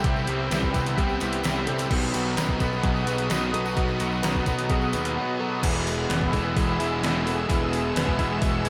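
This blissful, hazy shoegaze and dream pop passage, cut from a longer piece, opens at once on a full band in 4/4 at 129 BPM. A gated 80s drum machine sits up front with a thumpy kick, an overdriven gated-reverb snare, hi-hat and crash, while a growly fuzz bass drives the low end. Behind them a silky, detuned analog string pad holds sustained chords with ensemble chorus and vibrato. A bright, double-tracked overdriven guitar, a very quiet thick fuzz guitar and a twangy fingered guitar with reverse reverb all play riffs. A compressed, direct-recorded clean guitar adds arpeggios through subtle chorus and diffuse ambient delay. A distant, jingly tambourine enters at 0.2 seconds and drops out at 5.0 seconds. The harmony moves from Cmaj7 to B, then shifts to E at 5.6 seconds, and the whole mix is soaked in a huge, dreamy reverb.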